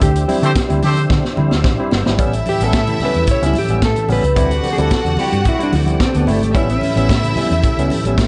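Disco at 110 BPM with a danceable, glamorous mood, built on a dark, round hollow-body bass, an up-front vintage kit with a tight kick, very quiet congas, a barky tine electric piano through phaser, and a smooth tonewheel organ on slow rotary speaker in the background, while a clear horn section punches brief stabs at 0.4 seconds, the drums fill from 1.1 seconds, and from 2.2 seconds a mellow, clean electric guitar with slapback echo takes its solo over a biting, intense symphonic string line as the chords move from D9sus4 to A7.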